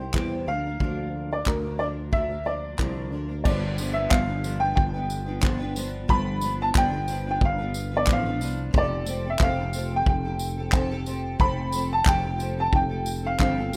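A lightly swung sixteenth-note feel in 4/4 drives this sunny, carefree acoustic pop excerpt, cut from a longer piece. A modern studio drum kit comes in at 0.1 s and sits up front, its punchy kick, handclaps, tambourine and crash cymbal ringing in a pumping studio room. A clear, woody upright piano carries the melody in an open, forward tone, while a picked steel-string acoustic guitar, double-tracked and warm, fills out the accompaniment beneath it. Underneath, a sustaining fretless electric bass sounds bright, direct and growly, with an ensemble chorus thickening its up-front presence. The brief opening passage moves to a new section at 3.5 s, where the harmony shifts from Bb/D to G7 and later settles on Fadd9 at 8.7 s. The whole thing has the roomy character of a rough home demo mix.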